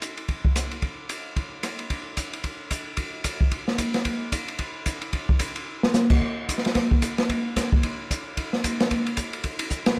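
Warm and swinging, this brief jazz excerpt cut from a longer piece moves at a brisk 223 BPM in 4/4, with a gentle swing on the eighth notes. A lone acoustic jazz drum kit carries the whole 10 seconds, using crash and ride cymbals, hi-hat, kick drum, snare drum and rim clicks. The kit sounds open and up front in a small room, with dark cymbals, a medium-tuned snare and a boomy kick, and its rolled-off top keeps the tone smooth. A short opening passage gives way to a longer second section at 1.9 seconds, and a drum fill arrives at 5.7 seconds. Light reverb adds a touch of space around the close, intimate sound.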